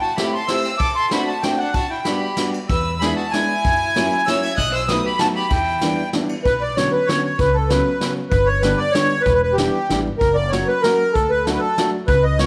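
Whirling and bittersweet, this rubato musette waltz fragment sets a reedy, sweet accordion melody up front with light tremolo tuning and slapback echo, joined until 6.1 s by a clear, focused bowed violin with vibrato as a second line, over a mellow, woody upright piano, a distant brushed drum kit with dark cymbals and a rolled-off top, and a pizzicato upright bass entering at 2.7 s, inside a small echo-chamber room.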